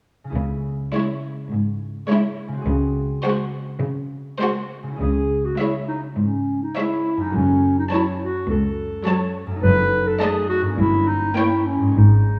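A concert harp's ringing arpeggios open this playful, mischievous film cue, quickly joined by a lush bowed cello section and a close double bass section beneath a smooth viola accompaniment and two distant, vibrato-rich violin sections carrying the melody and a second line, before a mellow, roomy clarinet enters at 5.0 seconds with its own line, all set in a moderate scoring-stage reverb over a straight 4/4 pulse.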